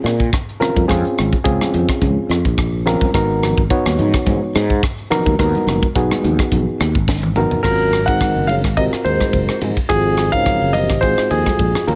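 A light studio reverb gives this driving, intense electric jazz fusion excerpt a subtle sense of space as it moves at 106 BPM in 4/4 with a slight sixteenth-note swing. From the start, a reedy, overdriven electric piano played through a combo amp supplies gritty, barking accompaniment over Bbm9 and Abm9 chords, while a growly fretless bass with a lush chorus sustains low notes beneath it. A tight funk drum kit sits up front with a high-tuned snare, tight kick, hi-hat, ride, rim clicks, crashes and toms. Damped, thick-skinned congas played with soft hands sit distant in the background. After a drum fill, at 7.6 seconds the harmony shifts to Ab13 and an intimate concert grand piano takes the melody, its deep bass and audible action noise clearly present, while a dark, breathy trombone with light vibrato traces a whispered second line in the background.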